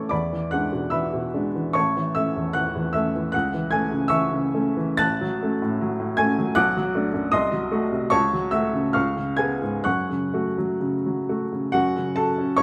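Set in a flexible two-beat metre, the music breathes with a free, rubato pulse that stretches and relaxes as it moves. This is a romantic classical character piece for solo upright piano, passionate and warm in mood, and it is heard as a brief fragment cut from a longer work. The piano sounds clear and woody, with a natural tone placed up front, and its range runs from the deep bass to the high treble. After opening in a bright major setting, the harmony turns toward a darker minor colour at 5.0 s, passing through a diminished chord on the way to a dominant seventh and a closing minor chord at 9.9 s. A moderate recital-hall reverb gives the instrument a sense of space while keeping its detail intact.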